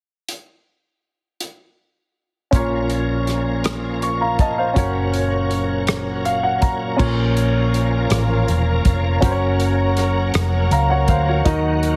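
A clear, open grand piano with deep bass accompanies this solemn, fervent slow gospel excerpt in 6/8, entering at 2.5 seconds over a smooth soul drum kit with dark cymbals and a punchy kick, joined by a round hollow-body bass and a shouting tonewheel organ turning through a slow rotary speaker, with the piano adding a fill before woody, lush strings arrive in the background at 7.0 seconds, all under a dry, heavily compressed radio sound.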